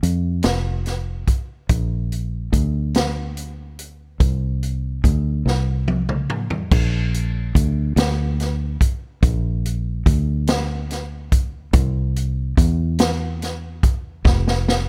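Slow gospel in 6/8 at 48 BPM, this hopeful, soulful excerpt from a longer piece pairs a punchy, foam-muted fingered electric bass, direct and up front in its low register, with an up-front acoustic big-band drum kit featuring a boomy kick, medium-tuned snare, hi-hat, toms and crash cymbal in a natural studio room, with fills at 5.5 and 14.3 seconds marking the turn into a new section and the close, all heard with little reverb.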